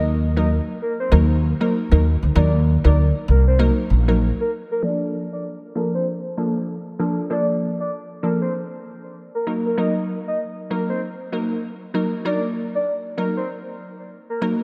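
A lightly swung afrobeats groove at 97 BPM in 4/4 sets a sunny, joyful mood in Bb major, heard here as a cut from a longer piece that drifts through Ebm and Bbmaj7 chords. An up-front, glassy wavetable pluck with a crystalline, detuned edge carries the accompaniment throughout, while a soft, round octave-layered synth lead with chorus, phaser, vibrato and analog delay sings the melody between Bb4 and Eb5, and a woody, thumpy pizzicato upright bass plays only until 4.3 seconds. A filter sweep runs from 4.8 seconds to the end of the 14.6-second cut, and a church reverb soaks the mix in a dreamy haze.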